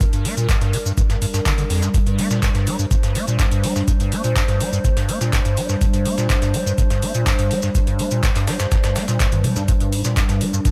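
Acid house with a trippy, raw mood, this short cut from a longer piece rides a straight 4/4 pulse over a single G minor chord. An overdriven electronic kick sits up front with a deep, analog sound, joined by a booming analog drum machine whose handclaps, toms and metallic hats carry their own overdrive and a small-room character. Further back, a gritty, compressed breakbeat sampler-style kit adds high-passed snare, shaker and hi-hat, while a grainy, vintage cabasa sits quietly in the background. The squelchy square-wave acid bass riff is the loudest melodic voice, hollow and resonant, with filter sweeps, overdrive and ensemble chorus. Beneath it all, a warbling, nostalgic tape-like pad holds detuned, lo-fi chords that pump against the kick through chorus, phaser and reverb, and a brief drum fill arrives at 9.3 seconds.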